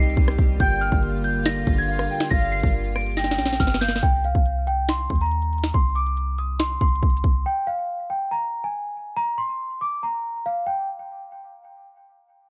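A delicate, bell-like celesta melody, softened by a low-pass filter and trailed by delay, sits up front in this dark, hard-hitting trap excerpt at 140 BPM in half-time C minor; a distant, straight-toned flute line with delay and soft, floating sul tasto string chords accompany it until 4.0 s, while a clean, boomy sine 808 bass and a trap kit of hard-clipped kick, sharp snare, crisp hats, finger snaps and rim clicks drive the groove through a fill and stop by 7.4 s, leaving the celesta alone in a dry, dull-topped mix coloured by worn cassette warble.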